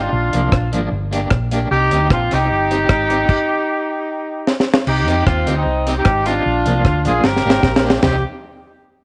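A straight, energetic ska groove in 4/4 drives this mischievous cut from a longer piece, with a deep reggae drum kit entering just after the start. The kit is dry and dark with a high-tuned snare, a tight kick, rim clicks, hi-hat, toms and crash, set up front with a rolled-off top and a gritty vintage sampler edge. Beneath it, a round, amped hollow-body short-scale electric bass plays fingered lines low in the register. An electric guitar at the edge of break-up adds twangy, slightly broken-up accompaniment with a tremolo effect, while a clear, tight horn section carries the melody up front with light vibrato and a vintage pop character. The band hits a stop at 3.3 seconds, a drum fill leads into a new section at 4.9 seconds, and another fill at 7.2 seconds closes it, all in a small room with light reverb.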